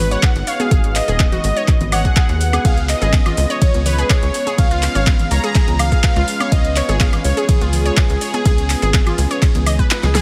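A soft, evolving supersaw melody opens this expansive, emotional progressive house excerpt at 124 BPM, joined by a pure FM synth bell playing a second line and resting on a smooth analog pad with chorus, while a tight, punchy sequencer bass drives the G#m7 to C#7 changes. A lush, detuned unison pluck adds bright arpeggios coloured by cassette tape and tape echo, and most parts breathe with sidechain pumping. Up front, a deep electronic kick anchors a layered deep house kit with a fat snare, metallic hats, claps, ride, shaker and woodblock, with roomy congas in the background; the kick drops out at 9.9 seconds ahead of a drum fill at 10.0 seconds, all in a digital ambience.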